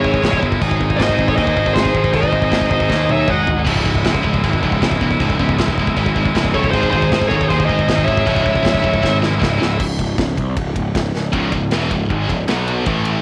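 Heavy metal at 157 BPM in C# harmonic minor, aggressive and heavy, this clip is cut from a longer piece and captured as a dry home recording on cassette. Two distorted high-gain lead guitars open together, one warm carrying the melody and one dark playing a second line beneath it; the melody guitar is touched with tape echo, and both drop out at 3.6 seconds before returning around 6.5 seconds and stopping at 9.2 seconds. A bright, picked high-gain guitar drives the riff from the start, joined at 3.7 seconds by a second riff guitar sitting further in the background. Up front, a growly fuzz bass with overdrive anchors the low end, while a big acoustic rock kit with a punchy kick, medium-tuned snare and bright china, crash and ride cymbals keeps the beat, adding fills that lead into new passages. The harmony moves between C#m and G#, breaks into an unaccompanied-by-chords stretch at 9.8 seconds, then settles back on C#m before closing on B5.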